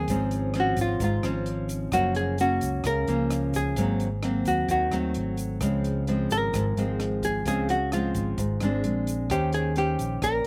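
Bossa nova at 130 BPM in Db major, sophisticated and romantic, where a dark, clean hollow-body archtop guitar with slapback echo carries the melody up front over fingerpicked classical nylon-string guitar moving through chords such as Dbmaj7/Ab, Gbmaj7, Ab7b9 and Eb13, supported by growly fingered electric bass, a compact cocktail drum kit with punchy kick, hi-hat and rim click, and a grainy tube shaker tucked in the background, all captured dry and outdoors in this short cut from a longer piece.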